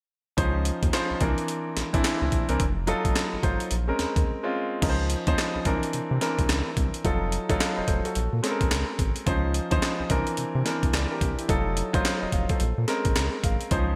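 A swung sixteenth-note groove in four drives this slick, confident new jack swing excerpt, with an up-front, sampler-style breakbeat kit of thumpy kick, high-tuned snare, handclaps, hi-hat and crash, all gritty and compressed under gated reverb. A round analog bass with a deep, evolving sawtooth-and-sine tone touched by ring modulation sits beneath a clear, polished baby grand piano that carries lush ninth-chord harmony through a bright 1980s-style digital sheen. After a short break at 4.3 seconds the progression repeats, and the piano closes with a fill from 12.9 seconds.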